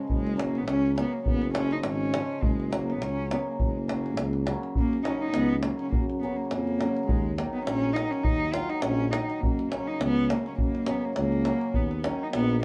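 Exuberant and virtuosic, this cut from a longer Balkan wedding-band folk piece in a lightly swung 2/4 sets a dark, intimate cello melody up front, its airy sul tasto bowing, vibrato and soft attack sounding close and boxy, over a shimmering, ringing hammered dulcimer, a dark, smooth-topped tuba bass in classical style and a deep, upfront davul, all played live together in a small room with moderate reverb, with the music moving into a new section at 4.8 seconds.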